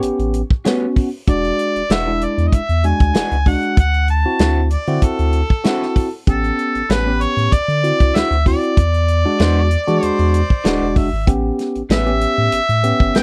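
Straight-eighth soul blues at 96 BPM with a rollicking, swaggering feel and a dry, close 1970s-style room sound, where a mellow, overdriven harmonica carries the scooped-note melody up front over a bright, phaser-treated tine electric piano, a round, deep analog bass and a tight, natural soul drum kit, while slightly broken-up, lo-fi guitar stabs from a small old amp join at 0.6 seconds, a clear, lightly vibrato-touched harmonica adds a second line from 4.7 to 11.3 seconds, and the lead harmonica takes a solo at 11.3 seconds in this cut from a longer piece.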